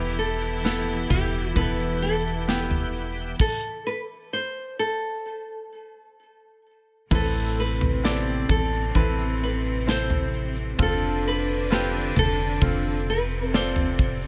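This emotional, longing pop ballad moves at a slow 65 BPM in A minor. It is cut from a longer piece. An up-front, fingerpicked nylon-string guitar carries the melody with a small, warm tone and a digital delay. Beneath it, a close, smooth symphonic cello section plays a bowed second line with light vibrato, also touched by delay, and a clear, polished baby grand piano fills in the accompaniment. A dark, hollow FM bass with a percussive, organ-like attack sits low and forward, while a bright, shouting tonewheel organ with key click, light overdrive, chorus vibrato and a slow rotary speaker holds background chords over E minor until 3.4 seconds. A stop follows, running to 7.1 seconds, before the harmony resumes on A minor add9 and F. A grainy egg shaker and an airy, acoustic studio drum kit with a punchy kick, medium-tuned snare, toms and crash cymbal round out the groove, all set in a small room ambience.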